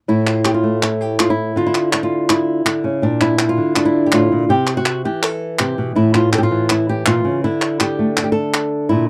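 Intense and fiery, this short flamenco passage cut from a longer piece puts a fingerpicked acoustic guitar with fresh strings up front on the melody from 0.1 seconds, joined by crisp palmas hand claps with a small-room feel, as the harmony moves from Dmadd9 through Bb and C to A5 and Dsus2 in a dry, close 1970s-style studio sound with modest booth ambience.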